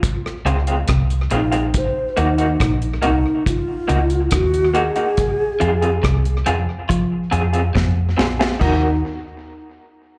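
A breathy clay ocarina and a deep, dry reggae drum kit open this hypnotic, meditative roots reggae excerpt in Eb dorian at 70 BPM. The ocarina carries the expressive melody with a mellow, rolled-off tone, vibrato and tongued notes, its line trailed by tape and slapback echo. The kit's dark, smooth sound pairs a tight kick and medium-tuned snare with hi-hat, rim click and crash cymbal. At 0.5 s a round, foam-muted fingered bass arrives up front, along with a slightly broken-up, lo-fi guitar through a small old amp whose compressed accompaniment carries tremolo and echo, and a clean picked guitar riff set in the background with analog chorus. The harmony moves between Fm and Ebm, and a drum fill from 7.8 s leads into a brief new section, all heard as a live gig through the venue's PA with light club reverb.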